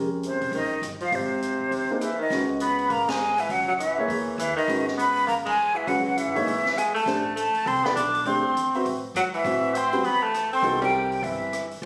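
A lightly swung 4/4 groove drives this hypnotic, cool modal jazz excerpt, with the open drum kit's dark cymbals, high-tuned snare, rim clicks and boomy kick setting a brisk pulse. The upright bass plays plucked, woody, growly lines low in its range, while the baby grand piano comps with a warm, natural tone in the middle register. Up front, a breathy, mellow silver flute carries the melody with vibrato and tongued, slightly unsteady phrasing, close-miked and set in plate reverb. Beneath it, a tenor saxophone with a vintage, lightly vibrato-tinged sound adds a second line in the jazz style. The full band hits accents at 3.1, 5.4 and 10.8 seconds as the harmony moves through minor-eleventh and ninth colours toward a closing dominant chord. The whole performance sits in a moderate club reverb and has the character of a phone recording made in the room.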